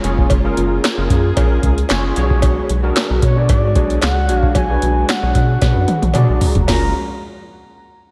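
A big arena sound with a roomy concert-hall reverb frames this danceable, feel-good early-eighties boogie funk at 113 BPM in F# major, moving from F#maj9 to Bm6. An up-front electro analog drum machine with a deep kick, punchy snare, metallic hats, handclaps, toms and crash drives the groove alongside a rubbery, bouncy square bass. A barky, overdriven tine electric piano with ensemble chorus and slapback echo plays the accompaniment and adds short fills, while soft bowed strings sustain chords in the background and a close, dry cowbell sits quietly behind. At 3.2 seconds a smooth, expressive sawtooth synth lead with vibrato enters, and a drum fill at 5.6 seconds leads back to F#maj9 at 6.7 seconds.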